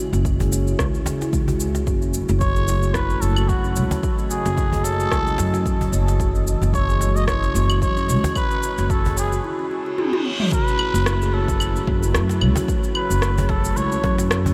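A dreamy mix soaked in a huge ambient reverb gives this meditative, hypnotic organic downtempo excerpt its floating quality, set in F# dorian at 111 BPM in 4/4 with a swung sixteenth-note feel. From the start, a woody, ringing kalimba plays arpeggios through a diffuse delay over an airy, breathy pad whose detuned, chorused chords sit softly in the background and pump against the kick. Up front, a pizzicato upright bass with steel strings carries the low end. Beneath it, a punchy, overdriven electronic kick and an overdriven, small-room organic drum kit of cabasa, claves, rim click and toms combine with a snappy, close and dry cajon played with soft hands. At 2.4 seconds a cup-muted trumpet enters as the jazz-style solo voice, veiled and raspy with light vibrato, scooped notes and a growling edge, trailing its own ambient delay. An electronic reverse cymbal at 9.9 seconds and a drum fill at 10.0 seconds lead into a new section at 10.5 seconds, where the harmony settles from C#madd9/F# back onto F#m7.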